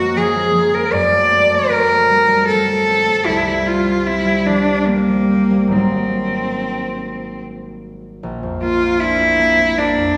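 A wet recital-hall reverb, typical of a church or concert hall, surrounds this dreamy, luminous passage cut from a longer impressionist duo for cello and harp. It moves in a rubato 3/4 at around 69-80 BPM and is tuned to A4 = 441 Hz. A single bowed cello carries the melody up front, its tone rich and focused with vibrato and a smooth top, spanning Bb3 to D5. The concert harp, also close, supplies a fingerpicked, ringing accompaniment with an acoustic warmth, reaching from Ab1 up to Eb4. The harmony drifts from Gbmaj7 through Bbmaj9/Gb, C5 and Ab9, and a new section begins at 8.2 seconds on Bbadd9, with both instruments sounding until the cut at 10.2 seconds.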